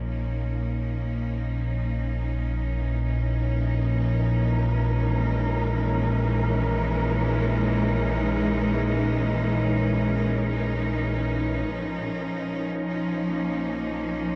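In free time, this desolate, dark ambient excerpt from a longer piece drifts through a chord movement from Bb minor to Db minor at 2.8 seconds and back to Bb minor at 11.7 seconds. A deep, ominous drone rumbles underneath throughout, its detuned, wave-folded tone sitting up front with its own reverb, and a filter sweep reshapes it over the closing seconds. A clear symphonic cello section holds sustained chords with focused, lush bowing and vibrato, fading in across the opening 11.7 seconds. From 3.7 to 11.7 seconds, an airy, breathy noise layer tuned to Bb4 hovers in the background like wind. The whole recording is steeped in a huge reverb with an 8.3-second decay and carries the worn, warbling pitch drift of old cassette tape.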